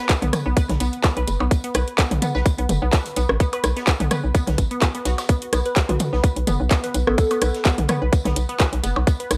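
A hollow, bouncy FM bass knocks up front between F#1 and B1, pumping under the sidechain beneath a tight, layered electronic kick in this clinical, quirky minimal techno excerpt at 127 BPM with a light 16th-note swing in 4/4. A squelchy, wave-folded blip pluck with phaser and tape echo carries the riff from B3 to B4, while handclaps and metallic hats, a tape-warm click kit of rim clicks, toms and blips, and a rolled-off acoustic kit of snare, hi-hat and tambourine sitting in the background fill out the groove within a small room ambience. At 5.9 seconds a dark, detuned unison lead with a moving notch adds a brief, catchy phrase between F#4 and A4 before falling away at 7.7 seconds.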